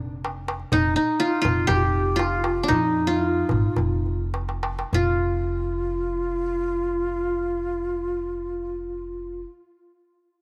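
Melancholic and longing, this excerpt of an Arabic maqam ensemble piece in 4/4 moves between 99 and 124 BPM and slows from 0.7 to 4.9 seconds. An up-front, bright-edged qanun played with fingerpicks carries the melody over a woody, thumpy pizzicato upright bass, while a crisp, close, metal-shelled darbuka adds a drum fill before dropping out at 5.2 seconds. Entering at 0.7 seconds, an airy, distant end-blown ney with vibrato traces a second line in light studio reverb.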